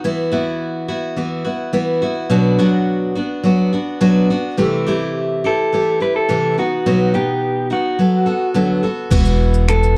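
A picked steel-string acoustic guitar sits up front and carries this tender, wistful acoustic pop passage from the start, its warm, auditorium-sized tone moving through chords such as Esus2, Bm and D6 in a straight 4/4 feel. At 5.5 seconds an electric guitar through a small old amp takes up the melody, its slightly broken-up, lo-fi tone compressed and placed close to the listener. At 9.1 seconds, as the opening chord returns, a pizzicato upright bass enters on a low E with a woody, gut-string thump. With it come sampler-style breakbeat drums, gritty and tape-warm, with a thumpy kick, finger snaps, shaker and a crash cymbal. Light reverb and a dark production give the short passage, cut from a longer piece, an intimate, late-evening glow.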